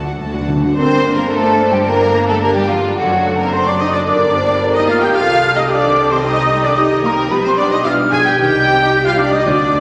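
An airy, close-miked group of flutes rides high over this dramatic, restless orchestral passage from a quick classical-period movement, entering at 0.8 seconds with crisp attacks and vibrato. Beneath them, the violin sections carry the melody and a second line with a clear, focused, bowed tone, while a rich, lush viola section fills in the accompaniment. A warm, distant cello section and a smooth, even double bass section anchor the bass, and a mellow French horn section holds sustained chords with light vibrato. Timpani played with medium mallets open the passage with a close, dry fill and return at 9.5 seconds. The rubato feel and restless minor-key harmony sit inside the generous reverb of a scoring stage, and the music is cut from a longer piece.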